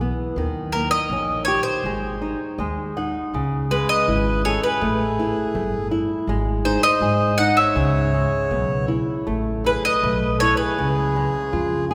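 Steeped in the long, wet reverb of a church, this mournful, longing fado-style ballad fragment drifts in a rubato 2/4 as fingerpicked flamenco guitar and a woody, thumpy pizzicato upright bass on gut strings sit up front from the start, a bright, double-strung bowl-back mandolin takes the melody at 0.7 seconds, a nylon-string guitar fill arrives at 2.2 seconds, and a reedy, close-miked accordion joins with a dry, clear second line at 3.7 seconds.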